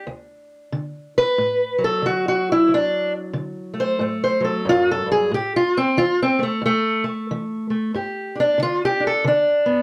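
Swaggering and soulful, this short cut of acoustic country blues features a lone fingerpicked steel-string guitar playing through its full 9.8 seconds with a loping swung feel. The parlour-style guitar sounds dark and boxy, sitting up front in a close, detailed recording with light reverb, as it moves from D to A5 and then G5.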